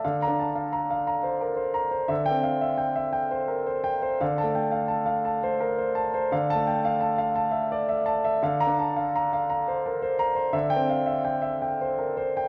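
In a rubato 3/4 at 85 BPM, this wistful, melancholic neoclassical minimalist piano excerpt, tuned to A4 = 442 Hz and cut from a longer piece, features a solo concert grand, clear and up front with deep bass and long sustain, ranging from D3 to Bb5 over a D pedal beneath chords moving from Bbadd9 through C, F and Dmadd9, all bathed in wet recital hall reverb.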